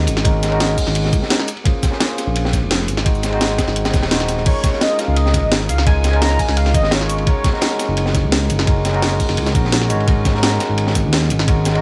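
Liquid drum and bass at 171 BPM in Db major with a dreamy, warm mood, built on a barky, overdriven tine electric piano through a combo amp with tape echo, a smooth gliding synth bass sitting dark and up front, a gritty, saturated breakbeat kit with a high-tuned snare and dark cymbals layered with a produced drum and bass kit whose cracking snare stands forward, and a knocking electronic kick, while a velvety synth lead with chorus, vibrato and tape echo carries the melody from 4.5 to 7.8 seconds over chords moving from Ab9sus4 through Bbm9 and Ab7 to Db69 and Gb69.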